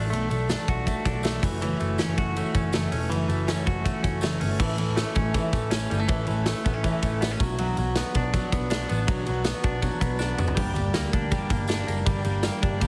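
A straight 4/4 pulse at 161 BPM drives this youthful, breezy stretch of jangly indie pop, cut from a longer piece. Up front, the big rock drum kit has a punchy kick, a medium-tuned snare and bright cymbals in a natural big-room sound, and a very quiet, jingly tambourine joins at 0.3 seconds. A clean, twangy electric guitar plays arpeggios up front, recorded direct with a scooped, compressed tone, while a fingerpicked twelve-string acoustic guitar shimmers in the background with a full-bodied, octave-doubled jumbo sound. Underneath, a vintage foam-muted electric bass adds a dark, round low end. The harmony moves from Bm7 to F#m7, then a new section arrives at 4.6 seconds built on A and Bm, and a drum fill at 10.2 seconds leads into Gm. The mix sits in light reverb with a heavily compressed, radio-style finish.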